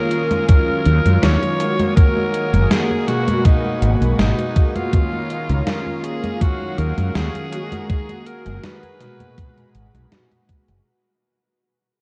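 A raspy, gritty alto saxophone with tape echo opens this faded, nostalgic vaporwave fragment over detuned, brassy synth brass and a lush, warbling unison pad, joined by a gated 80s drum machine of congas, hi-hat and gated-reverb snare, a thumpy, up-front electronic kick with 12-bit sampler grit, and a round fretless bass entering at 0.9 s, the dreamy, cassette-tinged mix soaked in huge ambient reverb as it fades out from 3.0 s.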